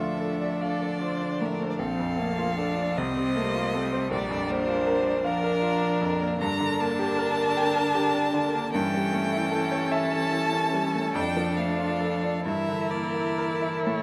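Classical chamber music, a slow romantic movement for piano quintet in D minor, moving at 41-53 BPM in a rubato 6/8 with a serene mood. A bright, brilliant concert grand with a worn edge and deep bass sits up front beside the first violin, whose rich, focused melody carries from Bb4 to Bb5 with vibrato, while a second violin with a smooth top stays in the background, the viola adds bowed accompaniment, and a distant, even cello sings a second line. The quintet plays together for the whole 14.0 seconds of this fragment, captured by close, detailed microphones in a concert hall with moderate reverb.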